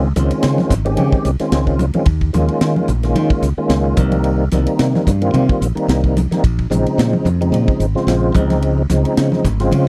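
A fat, lightly overdriven tonewheel organ with slow rotary speaker, chorus vibrato and audible key click opens this driving, nocturnal electric jazz fusion excerpt at 110 BPM, alongside a growly, punchy fingered electric bass, both up front, moving through Dbmaj9, Eb7sus4, Cm7 and Bbm11 with a light 16th-note swing. At 0.2 seconds a tight funk drum kit with a high-tuned snare joins in, while bright, thin-skinned congas sit in the background. The sound is dry and close, in a 1970s studio style, and the passage is cut from a longer piece.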